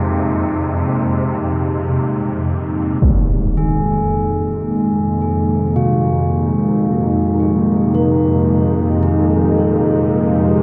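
Dark ambient drone at a slow 55 BPM in F minor, desolate and unsettling, where a deep, mellow, chorused pad sustains an Fm7 chord up front while a bright, metallic bronze singing bowl rings out delayed arpeggios with slow beating, a barely audible flickering grainy texture flickers until 3.1 s, a huge, dark, low-passed impact lands at 3.0 s, and from there the tense, detuned swarming drone beneath swells in a gradual fade-in, all soaked in a dreamy plate reverb as this fragment of a longer piece drifts on.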